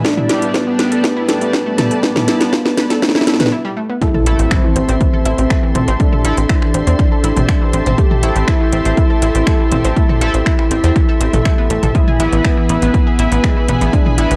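A punchy, overdriven electronic kick and a house kit of cracking snare, metallic hats, finger snaps and toms drive this straight 4/4 melodic techno, building through a drum fill and a brief break before the drop lands at 4.0 s with a very quiet electronic impact, followed shortly by a tight sawtooth sequencer bass up front. Above them, a smooth, expressive synth lead with vibrato carries the melancholic melody over a lush, detuned unison pad, round analog pluck arpeggios, edgy sync-sweep polysynth stabs with a nasal sync sweep and phaser, and a dark bowed string section in the background, all pumping against the kick. The cinematic piece has a moderate room reverb and the character of a home cassette recording, its chords moving from G/A to Am7 and on to E/A at 11.9 s.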